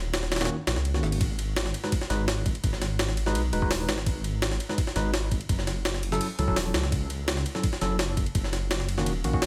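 A straight 4/4 beat at 168 BPM drives this dark, frenetic drum and bass excerpt in G# minor. It is built on a gritty, pitched-up, compressed jungle sampler-style kit, with a thumpy kick, high-tuned snare, hi-hat and ride, pushed up front with overdrive and a small room reverb. Beneath it, a thick, menacing detuned saw bass sustains low with a beating, saturated tone, while a worn, slightly out-of-tune tine electric piano plays stabs through a combo amp with a touch of drive and dub echo, over chords moving from D#m7 to G#m7 at 1.2 seconds and F#m7 at 5.5 seconds, the whole set in a digital ambience.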